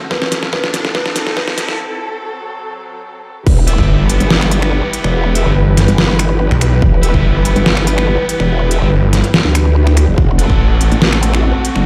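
A half-time 4/4 groove at 143 BPM anchors this aggressive, chaotic heavy wobble dubstep in E minor. It opens on a build-up in which a soft, felt-muted upright piano melody with dub echo and a background riser sit over dark, bowed chamber strings that pump under sidechain and stay low-pass filtered throughout, while a punchy, tape-warm electronic kick and an up-front dubstep kit of deep snare, crisp hats, finger snaps and crash drive forward. After a brief break from 1.8 seconds, the drop lands at 3.5 seconds with a wobbling, chorus-thickened growl bass and a snarling sawtooth bass with a moving notch, both overdriven, as bright, double-tracked high-gain guitar stabs with dub echo cut through, the kick now returning only in short bursts, all sounding as if played on a big sound system in a bare room with a large studio reverb.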